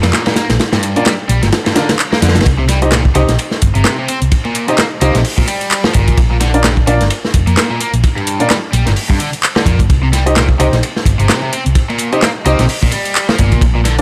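Funky and energetic, this breakbeat cut from a longer piece moves at 129 BPM in 4/4 with a swung sixteenth feel, sitting in C minor over a loop that alternates Bb and Cm chords. Up front, a crunchy acoustic breakbeat kit drives it with a tight kick, medium-tuned snare, hi-hat and dark ride cymbal, its saturated, gritty tone rolled off at the top. Beneath it, a layered electronic house kit adds handclaps and tape-warm hi-hats. A hollow-body short-scale electric bass, played with the fingers, holds the low end with a round, amped sound that sits prominently in the mix. A bright, overdriven stack guitar plays a picked, double-tracked riff coated in 12-bit sampler crunch and dub echo, and from 1.0 seconds a clear grand piano adds stabs through the same lo-fi grit and echo, all set in a light small-room reverb.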